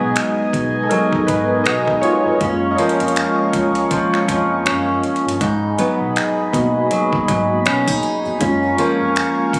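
Warm, round analog synth keys with chorus carry a solo through this smooth, dreamy contemporary R&B excerpt, over fingerpicked steel-string acoustic guitar arpeggios with digital delay, a shimmering pulse-width pad holding sustained chords, a mellow tine electric piano playing the bass line, and a trap kit of knocking kick, metallic hi-hats and finger snaps entering at 0.2 seconds, all swung over G#m7 and F#maj7 in a phone-recorded room sound with light reverb and compression.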